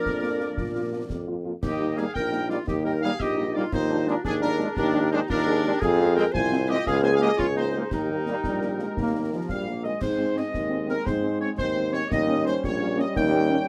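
This rousing, spirited military-style march for wind band moves along in a straight 6/8 at 114 BPM, with a dark trumpet section carrying the melody over a clear woodwind second line, a mellow euphonium that drops out at 9.7 s, sustained mellow trombone chords, background French horn accompaniment, and an up-front clear tuba bass, all driven by concert snare, bass drum and dark-toned clash cymbals as the key moves from Eb major to Ab major at 5.8 s in a close, dry recording.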